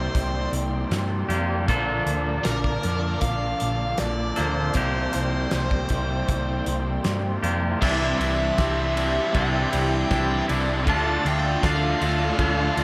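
A dreamy mix soaked in plate reverb opens this short, blissful excerpt of shoegaze-leaning dream pop rock, moving at an unhurried 78 BPM in C mixolydian and cut from a longer piece. A bluesy lead guitar carries the melody with distortion and tape echo, while a twangy, clean fingered guitar plays a riff through reverse reverb and an overdriven guitar riffs further back, touched with subtle chorus. Behind them a hollow soft pad holds airy, flute-like sustained chords with a slow attack and chorus, and an up-front hollow-body short-scale bass gives a dark, round low end. A loose indie drum kit comes in at 0.1 seconds with a fat snare, tight kick, hi-hat, ride and crash cymbals in a pumping studio room. At 7.8 seconds a bright, double-tracked sludgy guitar joins in the background as the harmony moves from C7sus4 and Bbmaj7 to Cadd9 and Dm.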